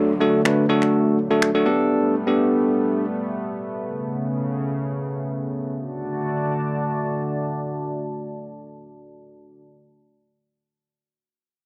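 A dry, close recording with a 1970s studio character opens this short cut from a longer upbeat, euphoric dance-pop piece. A bell-like tine electric piano, bright, clean and up front behind a low-pass filter, plays accompaniment only for the first 3.0 seconds. A shimmering, retro pulse-width pad carries sustained chords through the whole fragment, its chorus, sub octave, slow attack and long release giving a soft, spreading body under its own low-pass filter. Electronic finger snaps, overdriven and sampler-style with the tone of a large room, appear briefly from 0.5 to 1.5 seconds, while a very quiet downlifter sits beneath the opening. A filter sweep runs across the first section as the harmony moves from D through Gadd9 to Aadd9, and the second section begins at 5.8 seconds with a return to D, where the pad holds until the end at 9.6 seconds.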